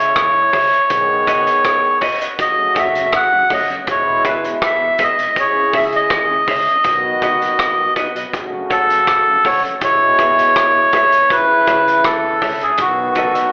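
A reedy, breathy melodica carries the melody up front in this hypnotic, laid-back roots reggae excerpt at 81 BPM in F# dorian, trailed by tape and slapback echo and joined by a mellow, distant trombone section playing a tight second line. A semi-hollow electric guitar adds clean, compressed accompaniment, a vintage drum kit with a punchy kick and rolled-off top keeps hi-hat and rim clicks going, and a round, foam-muted electric bass sits in the background, while a mellow tonewheel organ with chorus vibrato and slow rotary speaker joins at 2.6 s. The chords cycle through C#m, B, F#m and E, and the whole performance sounds like a live gig heard through a club PA, with small-room reverb and a thin telephone-like tone.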